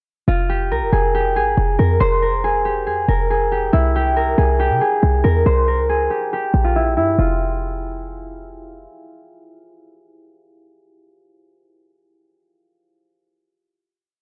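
A half-time drill groove at 139 BPM in 4/4 sets an ominous, tense hip hop mood in F harmonic minor, moving from Fm to C at 3.7 seconds. Up front, a ringing, fingerpicked concert harp plays a low-pass-filtered melody repeated like a sampled loop, while a punchy, tight 808-style bass pairs a sine tone with a noise layer and slides between long sub-bass notes. The dry, gritty recording carries transformer saturation and a light studio reverb, and the piece settles on a final note from 7.2 seconds, with the harp ringing until 9.7 seconds.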